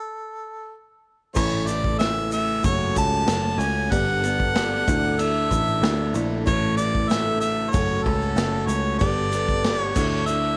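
A straight 4/4 folk rock and heartland rock groove at 94 BPM in A major carries this hopeful, jangly clip, where an up-front harmonica with light vibrato and scooped notes opens alone, joined at 1.3 seconds by a boxy ladder-braced acoustic guitar; at 1.4 seconds a roomy, distant drum kit played with bundle sticks, a growly foam-muted electric bass, a twangy, slightly broken-up electric guitar riff, a very quiet tonewheel organ with key click and a grainy tube shaker come in over a cycle of A, F#m, Gadd9 and Dsus2 in a small room.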